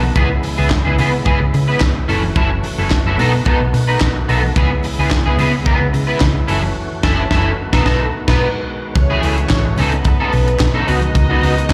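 Up front, a twangy, slightly broken-up electric guitar plays picked accompaniment with ensemble chorus and slapback echo, over a sultry, danceable disco groove at 109 BPM in C# minor that moves through C#m7, F#m7 and B7. A round, dark hollow-body bass, a gritty overdriven organ holding sustained chords through a fast rotary speaker in the background, very quiet damped congas, and a tight funk kit entering at 0.2 s with punchy kick, high-tuned snare, hi-hat, crash and handclaps fill out the sound, with a band accent from 6.8 s. At 9.0 s a reedy, bowed string section with a gut-string, period-style tone joins as a second line over slash chords on C#, and the whole cut carries the reverberant ambience of a live gig heard through a venue PA.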